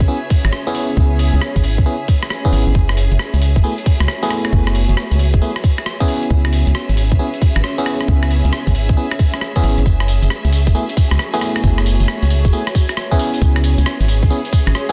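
A swung two-step garage groove at 135 BPM in 4/4 drives this soulful, bouncy excerpt in F# minor, with a tight, layered electronic kick sitting up front. From 0.3 s a gritty, compressed sampler-style breakbeat kit adds hi-hat, rim click and tambourine, with soft clipping on its snare. Underneath, a hollow, dark, organ-like FM bass with tube saturation punches through with fast, decaying notes, while a glassy, bell-like FM electric piano plays vintage stabs, warbling through chorus and digital delay with a noise layer. In the background, a lush, bowed symphonic violin section holds sustained chords with vibrato, and a cloudy, evolving granular pad blurs into its own reverb, both pumping under sidechain compression. The harmony alternates between C#m7 and F#m11, and the dense, heavily limited master sits in a digital ambience.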